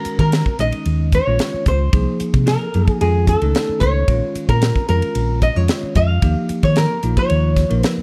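Intense and nocturnal, this eight-second cut from a longer electric jazz fusion piece moves at 112 BPM in a straight 4/4 over Ebm9, Cm7, F7alt, Bbm7 and Eb9, with a fingerpicked flamenco guitar carrying the melody through slapback echo and audible finger squeak, a dark, clean, compressed hollow-body jazz guitar playing a second line, a bell-like tine electric piano providing accompaniment, a crisp, airy drum kit with a high-tuned snare and tight kick up front, and a round, punchy short-scale bass entering at 0.1 seconds, all in a dry, dark production.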